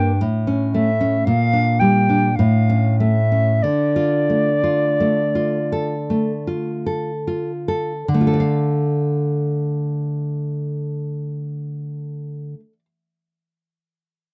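A pure-toned silver concert flute with vibrato and a crisp attack sings a solemn, melancholic melody in D minor over a full-bodied, fingerpicked nylon-string guitar in this romantic duo fragment, moving in a rubato 3/4 at 37-57 BPM and slowing over the first 8.1 seconds. The chords pass from A to Gm/Bb, back to A and on to Dm, and the flute falls silent at 6.5 seconds while the guitar carries on alone until 12.9 seconds. The sound is that of a dry, close 1970s-style studio recording touched with light reverb.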